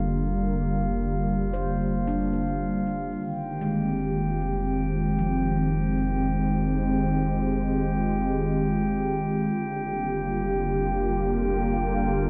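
A smooth, detuned sawtooth pad with chorus sits up front in this serene, reflective ambient passage in free time and F dorian, with a filter sweep running through it. A deep, round sine sub bass holds F1 beneath it, while a glassy, ethereal glass harmonica fades in, its pure tone beating. A ringing, meditative handpan also fades in, entering at 1.5 seconds with delayed arpeggios in the background before stopping at 8.2 seconds, as the chords move from Gm7/F to Fm9 and back, all bathed in a cathedral-like reverb in this segment cut from a longer piece.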